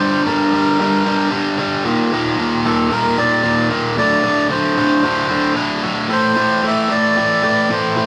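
A biting, double-tracked overdriven electric guitar riff sits up front in the low register while a reedy, breathy melodica carries a smooth, dark melody from the first second, moving this cinematic, melancholic rock fragment at 113 BPM through Gm, Eb5, D5 and Am, with the band playing live together in one room under a short, wet studio reverb.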